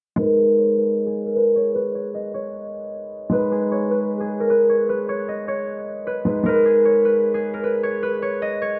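Melancholic and eerie, this short trap cut from a longer hip hop piece moves at 153 BPM in 4/4 with a half-time feel, resting on a G# minor chord throughout. A concert harp carries the melody from 0.2 to 8.8 seconds in a compact upper-middle range, its acoustic, fingerpicked tone ringing and sitting up front in the mix. Beneath it, a dark grand piano supplies accompaniment over the same span, lower in level and mellow, smooth and vintage in character, with long sustain. Both instruments pass through a low-pass filter, and a filter sweep runs across the whole passage, giving the sound a shadowed, veiled quality. Light reverb and small room ambience frame a dark, warm production.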